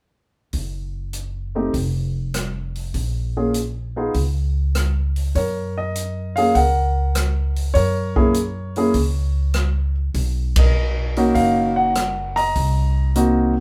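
Jazz piano trio with a swinging feel, where a pizzicato, woody upright bass and a drum kit of hi-hat, ride cymbal, rim click and punchy kick begin at 0.5 s, an intimate grand piano with audible action noise takes the melody from 1.6 s, all three sit up front in a moderate studio room, and a band accent lands at 10.5 s in this warm fragment of a longer piece.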